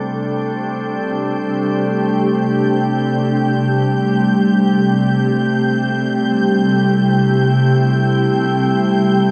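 A glassy, ethereal FM pad sits up front with slow-blooming sustained chords under a filter sweep, alongside a calm, detuned organ-like drone, both carrying ensemble chorus, while a dark, muted violin section played con sordino with vibrato fades in on a single high note, all of it bathed in a huge wet reverb in this serene ambient fragment.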